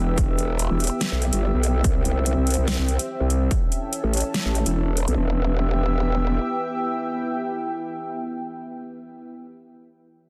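A dense, heavily limited modern master with light reverb and lossy compression artefacts frames this menacing, chaotic fragment of half-time heavy wobble dubstep. An aggressive, saturated growl bass with a formant-filtered wobble, chorus and overdrive sits up front until 6.4 s. A distorted, layered electronic kick and a dubstep kit of huge snare and metallic hats, both in small room reverb, strike from 0.2 s, with the kick dropping out at 3.6 s and the kit at 5.2 s. Throughout, a lush, detuned sawtooth unison pad holds sustained chords while a deep, moody, wave-folded ambient pad with ring modulation and built-in reverb adds texture, both under chorus and sidechain pumping.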